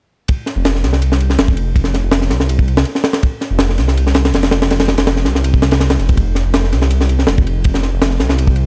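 A dark, warm production with light reverb frames this frenetic drum and bass excerpt in the jungle style, where a tight, acoustic funk kit sits up front from 0.3 seconds, its high-tuned snare, tight kick and bright ride cymbal heard in a small room. At 0.6 seconds a detuned sawtooth bass joins, deep and rumbling, its beating tone blending square and sine colours with a fast attack and sustained notes. The mood stays shadowy and restless throughout this single section.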